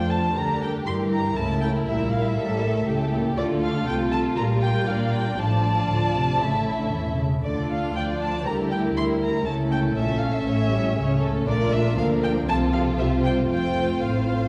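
A straight 4/4 pulse at 119 BPM drives this urgent, restless classical-period string orchestra excerpt, where a dark, close violin section carries the melody over a lush symphonic second violin line, expressive violas, a soft-attacked double bass section and background cellos gliding with portamento, all bowed with vibrato in a wet recital hall heard from further back, the harmony moving through D minor before settling into F major at 11.5 s.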